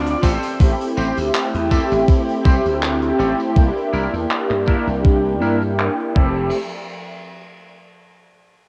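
A rough, cassette-soaked home-demo sound with small-room ambience frames this dreamy, woozy vaporwave fragment, where an overdriven, thumpy electronic kick sits up front beside a round, detuned synth brass with ensemble chorus, cassette tape and analog delay, a punchy glassy slap bass under a filter sweep, a twangy picked electric guitar riff that opens with a clean fill, a gated 80s kit of handclaps, hi-hat, tambourine and crash cymbal roughened by 12-bit sampler grit, and a nostalgic, warbling tape-like pad drifting in the background over Am7, C9 and Fmaj9 before the music breaks off at 6.5 seconds.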